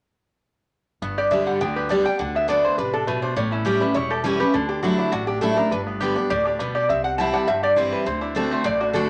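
A straight 4/4 bluegrass groove carries this virtuosic, rustic excerpt, where an up-front lap resonator guitar played with fingerpicks and slide sings a metallic, nasal melody from 1.2 seconds alongside a twangy, percussive banjo lead, over a bright, full-bodied picked dreadnought guitar and a woody, thumpy pizzicato upright bass on gut strings, all in a moderate studio reverb as the chords move from G through D6, A7 and Dadd9, back to G, then on to C and D7.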